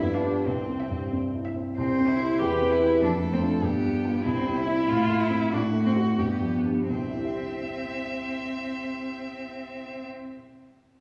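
A quick classical-period movement for piano trio in C major, this lively, spirited passage moves in 2/4 with a straight feel at roughly 84-98 BPM, cut from a longer piece. The grand piano carries the accompaniment from the very start, its polished, present tone sitting up front and ranging from the low bass up to the middle treble. The violin sings the melody from 0.1 seconds, bowed by a single player with smooth, even vibrato, though it sounds distant next to the others. The cello supplies a second line in its upper register, its bowed tone smooth and even with vibrato and a smooth top, placed close to the listener. The harmony runs through a cadence-driven progression from C through G7, F/A and a rootless D7/A back to C at 6.9 seconds, with the tempo slowing between 3.6 and 6.9 seconds. The trio is heard from further back in a recital hall, with a wet reverb of 1.8 seconds alongside small room ambience.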